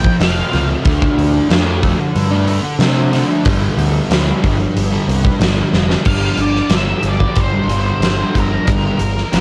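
A straight 4/4 pulse at 92 BPM drives this hazy, wistful shoegaze and dream pop fragment, where a huge arena drum kit with a fat snare, punchy kick and bright cymbals sits up front beside a double-tracked, chorused fuzz guitar riff, a growling, round overdriven picked bass anchors the low end, and an octave-fuzz lead guitar with tape echo flickers at the start before returning at 6.1 seconds after a drum fill, all colored by the light reverb and grain of a home cassette recording as the chords move from F5 through Dm7 and G5 to Gm.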